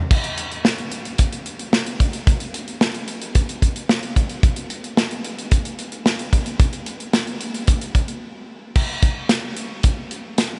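This pop excerpt runs at 111 BPM in a straight 4/4 with a romantic, uplifting mood, carried by a modern acoustic studio drum kit that plays from 0.1 to 10.5 seconds. The kit sits up front and mid-forward, with a punchy kick, a medium-tuned snare, hi-hat, tambourine and crash cymbal, all with a rolled-off top. A break at 8.2 seconds leads into a new section at 8.8 seconds, and a huge ambient reverb soaks the dreamy, dark-topped mix.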